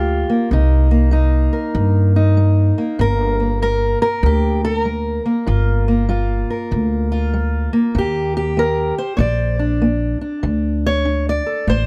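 The recording is dark and close, with the room almost dry and both instruments sitting up front. It is a brooding, mournful piece of acoustic country blues for a duo, with swung eighths in a loping 4/4 that runs for just under 12 seconds, cut from a longer performance. A fingerpicked steel-string parlour guitar carries the melody with the warm, boxy tone of fresh strings, reaching from low in its range up to D5. Beneath it, an upright bass played pizzicato on steel strings gives a woody, shadowed foundation between G1 and G2, sitting slightly forward of the guitar in level. The harmony moves through minor seventh chords before shifting to Ebmaj7 at 8.0 seconds and settling onto a bare D5 at 10.4 seconds.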